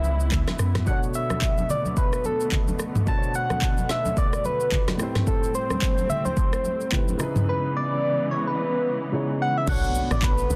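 A swung sixteenth-note groove in 4/4 drives this late-night, deep amapiano cut, taken from a longer piece. An electronic afro-pop drum kit sits up front with a deep kick, a woody, softly clipped snare, rim clicks, handclaps, shaker, toms and crash, while ringing, medium-tuned congas played with soft hands sit in the background until 7.5 seconds. A punchy sine sub bass with a pitch-drop attack opens the track but stops at 0.8 seconds, and a round, dark FM log drum bass arrives in the background at 9.7 seconds, joined a moment later by a very quiet electronic impact. Over minor-seventh chords, a gentle, keys-like FM synth lead carries the melody up front, coloured by chorus, vibrato and tape echo. A worn baby grand piano with long sustain accompanies beneath, and a veiled, con sordino string section holds lush, distant bowed chords. The mix is dry, dense and heavily limited in a modern style.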